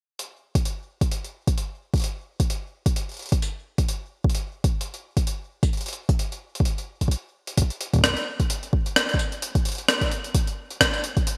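This IDM piece, cut from a longer work, moves at 130 BPM in 4/4 with a 56% swing on the 16ths, and its mood is eerie and melancholic. A jungle sampler-style kit of hi-hat and rim click starts at 0.2 seconds, pitched up, compressed and gritty with overdrive, gated reverb and digital delay, and re-recorded in a large room. A deep, tape-warm electronic kick joins up front at 0.6 seconds, and a brief break at 7.1 seconds leads into a new section, all within a bright 1980s-style digital production with light reverb.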